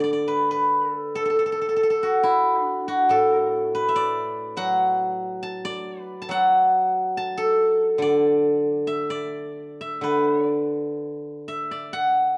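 A moderate recital-hall reverb gives this short cut from a longer Chinese traditional piece an airy, resonant space. A solo steel-string zither, played with fingerpicks and sitting up front, sounds silvery and ringing across a range from A2 to A5. In D gong mode with A4 tuned to 441 Hz, it moves in a rubato 4/4 at roughly 61-72 BPM and plays alone throughout its 12.4 seconds, with an elegant, pastoral mood.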